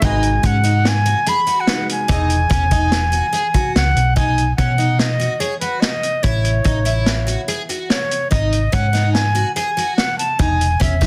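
Bright and driving, this progressive instrumental band piece, cut from a longer work, moves in an uneven 5/4 with a straight feel. A reedy, airy concert flute carries the melody up front with a straight, tongued tone and softened highs, ranging from B4 to B5. Beneath it, a jumbo twelve-string acoustic guitar picks shimmering, octave-doubled arpeggios, while a round, dark hollow-body bass sits prominently alongside a punchy vintage drum kit of kick, medium-tuned snare and hi-hat with a rolled-off top. A dark, clean archtop guitar adds picked accompaniment in the background before dropping out at 4.1 seconds. The harmony shifts from G#m7 and Emaj7 into a passage of B, A and G#5 chords, with light reverb and a dense, heavily limited modern master.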